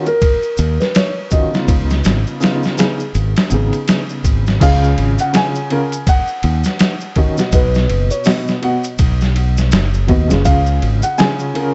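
Smoky and melancholic, this trip hop excerpt pairs a soft, felt-muted upright piano melody carrying 12-bit sampler grit and tape echo with a dark, woody upright piano accompaniment treated with tremolo and tape echo, over a pitched-down, overdriven sampler-style drum kit with a thumpy kick, a punchy, bright fingered electric bass up front, and compressed, saturated maracas in the background, all wrapped in a dark production with light small-room reverb as the chords move from Ebm9 to Db9 and on through Db, Ebm and B.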